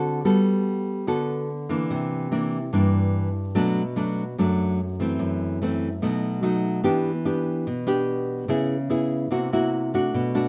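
Bossa nova with a sunny, breezy mood, carried by a lone nylon-string guitar that is fingerpicked in a classical manner, sitting up front with a warm, acoustic tone and the occasional finger squeak. The harmony moves through rich, jazzy chords such as Gmaj9, C9, F#m7b5, B7 and C7#11, all bathed in a moderate large-studio reverb. This short fragment is cut from a longer piece.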